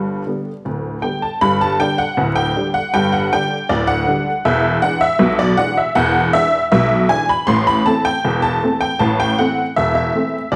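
Cheerful and lively, this short excerpt cut from a longer ragtime piano piece moves at 79 BPM in a straight 2/4, set in G major. A lone honky-tonk upright piano carries everything, its detuned, jangly tone sitting up front with a woody, vintage character that spans from deep bass notes up into the bright treble. After a brief opening passage on G, the music shifts at 1.4 seconds into a new section that moves through G5, then E7 at 4.5 seconds and A minor at 7.5 seconds. The sound is that of a live performance in a single room, bathed in the reverb of a stone space, with a faint vinyl crackle adding to the old-time atmosphere. The clip runs to 10.6 seconds as part of the larger piece.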